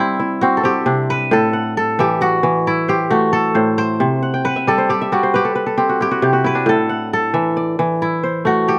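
Warm and hypnotic, this short excerpt of West African traditional string music moves at 90 BPM in a straight 12/8, tuned to A4 = 442 Hz. Two acoustic koras share the whole passage: one carries a fingerpicked melody in a narrow middle range, while the other spins ringing arpeggios from low A2 up to G5, and a crisp kora fill arrives between 4.2 and 6.7 seconds. Both sit up front with a slapback echo in a dry outdoor recording, cycling gently between C and A minor.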